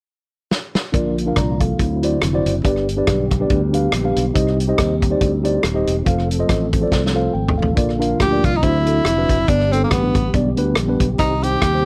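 A swung 4/4 groove at 140 BPM drives this jubilant, uplifting stretch of uptempo gospel in Bb major, cut from a longer piece. A soul drum kit opens with a fill at 0.5 seconds, its tight kick, medium-tuned snare, rim clicks, hi-hat and toms sitting up front with a rolled-off top. Another fill leads into the second section at 7.8 seconds. A warm, direct fingered electric bass joins alongside a clean, mellow tine electric piano heard through its built-in speakers, while a soft, flute-like tonewheel organ holds chords in the background, colored by a fast rotary speaker, chorus vibrato and a touch of key click. The harmony moves from Bb through D9 and G to Cm and F before circling back. At 8.2 seconds a present tenor saxophone steps forward with a jazz-style solo carrying light vibrato, all within the dry, close sound of a 1970s studio.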